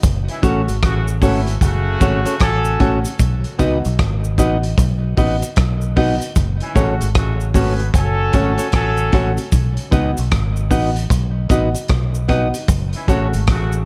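Roots reggae with a serious, laid-back mood, swung gently over a slow alternation of F#m and B, led by a round, punchy fingered electric bass and a gritty, saturated breakbeat drum kit with a tight kick, hi-hat and rim click, both sitting up front. A close, dry cabasa sits low in the mix, while a vintage jazz-style horn section with soft attack and light vibrato carries a second line through tape echo. A twangy, clean electric guitar, also echoed, and a woody, boxy upright piano with short stabs fill out a dark, warm production.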